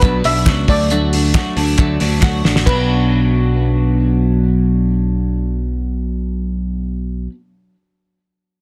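A straight 4/4 pulse at 136 BPM drives this wistful, bittersweet jangly indie pop excerpt in B minor, where a mellow, shimmering steel pan carries the delayed melody over fingerpicked steel-string acoustic guitar in the background, chiming twelve-string electric guitar arpeggios with subtle chorus and delay, a growly, bright picked electric bass up front, crisp group handclaps, and a cloth-damped, thuddy drum kit with a fat snare and dark cymbals that plays a fill from 2.2 s and drops out by 2.8 s, the handclaps falling away by 2.9 s, as the chords move from Bm to D and back to Bm.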